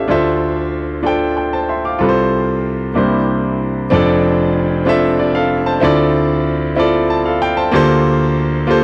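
Gospel in 6/8 at 63 BPM, counted in dotted quarters, this short excerpt in F major features a clear, up-front grand piano alone, jubilant yet reverent as it moves through rich chords like Dm9, C9 and F6 across a range from F1 to D6. The sound is dry and close, with a 1970s studio character and light reverb. The second section begins at 3.9 seconds, where a piano fill at 6.8 seconds leads toward a closing Gm11/D.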